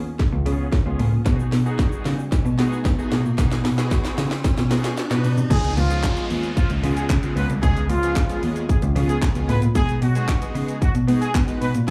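Dance-pop with a bittersweet, energetic drive, heard live through a club PA with little reverb: a rich, bowed cello with vibrato carries the pumping bass line under a punchy, layered house drum kit with a cracking snare, while a fat, detuned sawtooth polysynth with subtle chorus and a low-pass filter fills the harmony, a riser and downlifter sit in the background, and a grainy, very quiet egg shaker joins the drum-fill build-up until a clear horn section takes the melody with echo and delay at the drop at 5.5 seconds.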